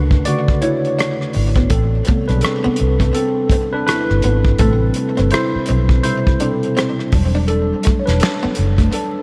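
R&B and neo-soul in an introspective, late-night mood, this excerpt features a worn, slightly out-of-tune tine electric piano soloing through lush chorus over Bm9, Am9 and Em9 chords, with a round, foam-muted vintage bass and a gritty soul drum kit of fat snare, tight kick, hi-hat, rim click and handclaps up front, while a dark hollow-body archtop guitar with chorus and delay sits in the background, all bathed in cathedral reverb, tape saturation and vinyl crackle for a dreamy feel.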